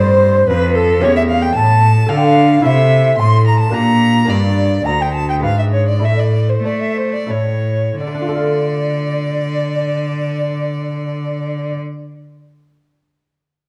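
Heard in a recital hall with moderate reverb and a dark, warm production, this flowing, introspective baroque-style sonata excerpt in D minor and 3/4 moves at 83-112 BPM and slows between 3.5 and 8.0 seconds, as a rich, smooth bowed violin carries the melody over an airy, hollow flute second line, a delicate fingerpicked gut-string lute accompaniment and a focused, up-front cello bass, arriving at a new section on D minor at 8.0 seconds.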